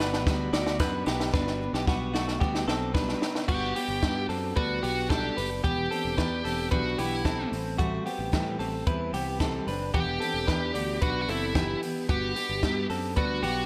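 A drum fill on a compact cocktail kit with a punchy kick and dark cymbals opens this breezy, nostalgic jangly indie pop cut at 112 BPM in G major. Alongside it from the start come twangy clean electric guitar arpeggios with slapback and tape echo, a woody steel-string acoustic guitar in the background, a round picked bass, and warbling, mellow organ-string chords that stop at 1.3 s, with a very quiet jingly tambourine briefly entering at 0.3 s. From 3.5 s a dark, overdriven lead guitar carries the melody over Gmaj7, Em7 and Am7 chords, all set in a lush hall reverb that gives a big arena sound.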